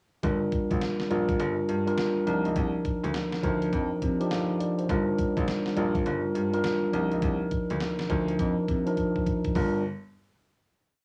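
A hard-swung 16th-note groove at 103 BPM in 4/4 drives this short, bouncy and confident new jack swing R&B piece in G minor, tuned to A4 = 444 Hz. A gated 80s digital drum machine sets the beat with a thumpy kick, hi-hat and a gated-reverb snare, its sampler-style sound overdriven, re-recorded in a large room and given a cassette-tape grit. A clear baby grand piano takes the bass role, playing a swung synth-funk line with chromatic approach notes and long, natural sustain. Up front, a mellow tine electric piano, clean and direct with a cassette-tape tint, plays syncopated chord stabs in drop-2 voicings with short fills, moving between Gm7 and Cm11. A drum fill at 9.0 seconds leads into a final Gm7 at 9.6 seconds, and the whole piece carries the light reverb of a home cassette recording.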